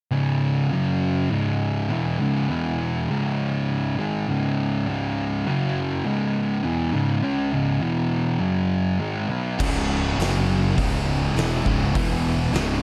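At a straight 102 BPM in 4/4, this ominous, heavy stoner and doom metal excerpt in C# minor opens with two thick fuzz guitars riffing together, one dark and set back, the other up front, before a bright, double-tracked high-gain guitar, a growly overdriven fingered bass and an oversized low-tuned drum kit with a fat snare, punchy kick and dark cymbals in a pumping stone room all crash in at 9.6 seconds, moving through chords like C#5, F#5, C#m and E5 in a dark, small-room production.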